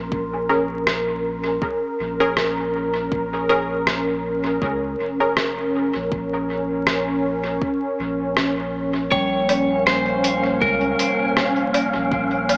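A slow 80 BPM groove in 4/4 with a light 16th-note swing anchors this spacious, deep ambient dub excerpt in Bb dorian, resting on a single Bbm7 chord, with a layered electronic kick, a compressed, pitched-down sampler-style kit of hi-hat, rim click and woodblock drenched in dub echo, and a round, mellow sub bass beneath a detuned sawtooth analog pad thickened by chorus. Early on, muted, filtered chord stabs with a bright pluck and dub echo flicker through until about 5.4 s, and at 9.1 s a slightly broken-up electric slide guitar played with fingerpicks steps up front as a ringing vibraphone arpeggiates in the background. From 10.0 s a breathy, dark, wind-like noise texture drifts in behind, all set in a moderate spring reverb with vinyl crackle and a small-speaker tone.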